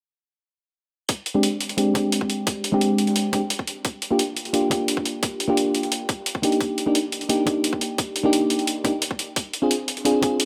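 A mellow FM electric piano sits up front in this dreamy, rolling slice of liquid drum and bass, its soft, round tone carrying a dark edge and a noise layer beneath each fast-attack note as it decays. Chorus, a low-pass filter and dub echo color the keys, and a filter sweep runs across the piano from 1.1 seconds through the end of the clip. Its chords move from Abmaj7#11 to Gm7, then Ebmaj7/Bb and finally Fm6/C. Underneath, a tight, layered electronic kick drum, overdriven and high-pass filtered, holds a straight 4/4 pulse, while a gritty, compressed, sampler-style hi-hat with a tape-tinged character rides on top. A lush digital hall reverb gives the whole short cut, taken from a longer piece, a spacious, floating ambience.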